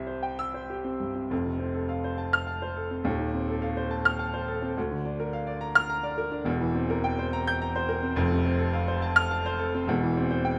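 A baby grand piano plays alone from the start in this heroic, brilliant classical study, a short passage cut from a longer virtuoso piece in 6/8 with free rubato. Its open, up-front tone carries long sustain across a span from Eb1 to G6, moving from a brief opening on C into harmonies that pass through F, F7/Eb, Bb/D and C7/E before returning to F and arriving at C/E at 9.9 seconds. Close, detailed microphones and light reverb keep every note clear and present.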